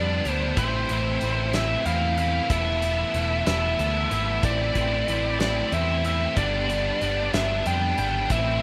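A dry, rough home-demo sound frames this short indie rock clip in A minor, moving in 6/8 at 62 BPM with a bittersweet, restless mood. A biting, overdriven lead guitar carries the melody over a crunchy guitar riff and a bright, high-gain distorted guitar with ensemble chorus sitting up front, while a round, punchy picked bass anchors the low end. A big rock drum kit with a tight kick, medium-tuned snare, hi-hat and rolled-off top enters at 0.3 seconds beneath chords that move through G, Am and Esus4.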